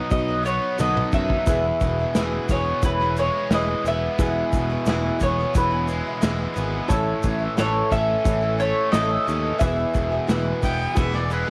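A straight 4/4 groove on a soft brush drum kit, with a punchy kick and drum fills at 0.8 and 11.0 seconds, carries this open-road, nostalgic folk rock and heartland rock excerpt, supported by a round picked electric bass and a grainy egg shaker in the background. A woody, double-strung mandolin takes the melody over a shimmering, octave-doubled twelve-string acoustic guitar, a bright, overdriven riff from a double-tracked cranked stack guitar, and a worn baby grand piano with long sustain, as the chords move from B to E, A and back to E. At 10.6 seconds an up-front harmonica with a smooth top enters with a second line, all set in the light reverb and small-room ambience of a cassette home recording.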